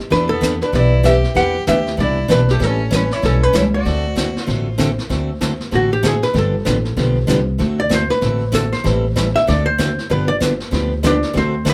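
A swung 4/4 groove on brushed drums with a boomy kick drives this playful western swing excerpt, where a woody pizzicato upright bass and a bright, full-bodied picked acoustic guitar support a dark, clean archtop guitar melody, joined by a biting bowed fiddle until 4.8 seconds before the archtop takes a solo from 5.1 seconds, all in a moderate club reverb.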